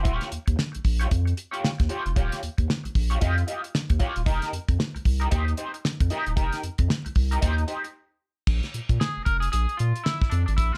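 Energetic and funky, this excerpt of a 114 BPM funk groove in 4/4 swings its sixteenths over Eb9 and F9sus4 chords, driven by a damped 70s drum kit with a fat snare, tight kick and dark cymbals alongside a thick, saturated sub bass with a fast attack. An electric guitar at the edge of break-up, twangy and fingered, colours the accompaniment with wah and lush chorus, all placed up front in a light reverb. After a break at 8.0 seconds, the music moves to a Bb7 chord where a clean electric guitar solo enters over the band from 8.5 seconds.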